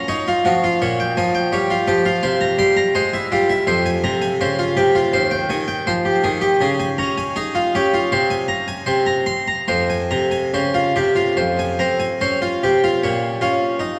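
The rhythm moves in a rubato 4/4 that drifts between 71 and 85 BPM, giving this fragment of a longer baroque-style suite movement a grave yet flowing character. A lone Flemish-style harpsichord carries everything from 0.0 to 14.0 seconds, ranging from Eb2 up to C6 in F minor and tuned to A4 = 441 Hz. Its plucked tone is brilliant and full, with the ring of octave strings, and it sits close-miked, dry and up front. The harmony opens on Bb minor and passes through C7 to F minor, then moves through Db and an Ab chord with an added ninth before settling on F minor again and returning to Bb minor at 13.0 seconds. The whole recording is bathed in a long, wet cathedral reverb and carries the worn character of old cassette tape, whose warbly pitch drift adds a faded, wavering quality.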